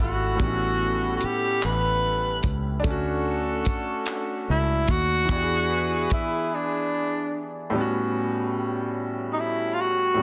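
Slow six-eight R&B with a sensual, intimate mood, led by a breathy, whispered tenor saxophone melody with scooped notes, vibrato and slapback echo over polished grand piano chords moving through A13, Dmaj7 and E7, tight vintage horn stabs, a round fingered electric bass, and a damped, dry 70s drum kit of kick, hi-hat and handclaps that drops out at 6.3 s before a short break and a return of the opening theme at 7.7 s, all set in light small-room reverb within a dense, heavily limited modern master.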